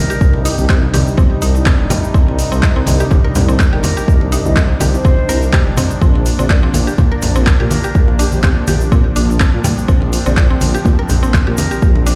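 Warm and earthy, this cut from a longer afro house piece moves at 124 BPM in C minor with a 16th-note swing, shifting from Cm to Bb at 6.0 seconds. A deep, tape-warm electronic kick sits up front over a rumbling, detuned saw bass with sidechain pumping, while a deep house drum kit adds handclaps and metallic hats, and low-tuned congas and a grainy egg shaker stay in the background. A smooth, warbling analog pad with chorus holds sustained chords, a woody, round mallet-like synth pluck spins arpeggios through chorus and delay, and a hollow, pure concert flute carries the melody with vibrato and delay, all set in a stone room that sounds like a big sound system echoing off bare walls.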